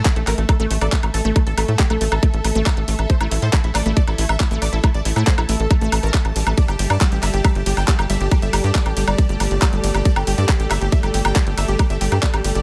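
Psychedelic trance excerpt at 138 BPM in 4/4, intense and hypnotic, driven by an overdriven up-front electronic kick and a tight, punchy sequencer bass, with an overdriven garage kit of handclaps, hi-hat, ride cymbal and woodblock, a detuned sawtooth supersaw stab melody with phaser and dub echo, a lush unison pluck riff with dub echo in the background, a clear bowed string section pumping behind them, and an evolving, morphing wavetable pad with chorus entering at 8.2 s over chords moving from A5 to G5 in a digital ambience.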